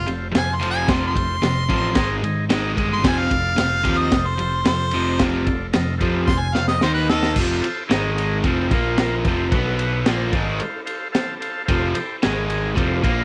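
A straight 4/4 beat at 111 BPM drives this swaggering, rowdy garage rock excerpt. A crunchy breakbeat kit with a high-tuned snare, punchy kick and dark cymbals sits saturated and up front, joined by a double-tracked, overdriven guitar riff and a growling picked bass that is also driven hard. A bright harmonica with light vibrato and scooped notes solos from the start until 7.4 seconds, capped by a drum fill, while a buzzy vintage combo organ holds clean sustained chords over a dry, close sound and adds its own fill at 10.9 seconds. Throughout, the harmony circles F with brief moves to Ab5, Eb5, Bb5 and B5.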